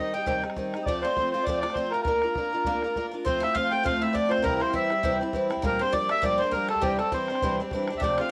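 This Celtic folk reel is a bright, lively fragment taken from a longer piece, played at a quick clip with a swung lilt. A reedy, airy accordion carries the tune up front, joined by a picked twelve-string acoustic guitar whose boxy, shimmering octave-doubled strings give a full accompaniment. Tucked in the background, an Irish bouzouki adds a second line with a metallic, double-strung sparkle, while a very quiet tin whistle floats high above with a mellow, vibrato-tinged tone and a soft, expressive attack. A bodhran enters at 0.3 seconds, its open, boomy hits sounding close and dry. The accordion, bouzouki and guitar carry a cassette-tape character, and the whole homespun recording sits in a light reverb as the harmony moves from C minor through F and B-flat, shifting into a second section at 3.3 seconds.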